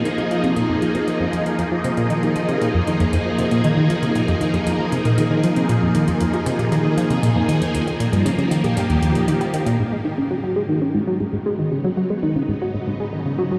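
A tight, driving sequenced synth riff with a wave-folded, filter-plucked bite, chorus, phaser and analog delay pushes this mysterious, expansive stretch of ambient space music, cut from a longer piece, over swirling, warbling vintage string-machine chords with ensemble chorus and phaser, while electronic hi-hat and bongos with metallic, tape-warm hats and analog delay fade in until they stop at 9.8 s, when the harmony shifts and the string machine fades in through 13.6 s, the whole piece sitting in a huge wet reverb as if played through a big sound system in a bare room.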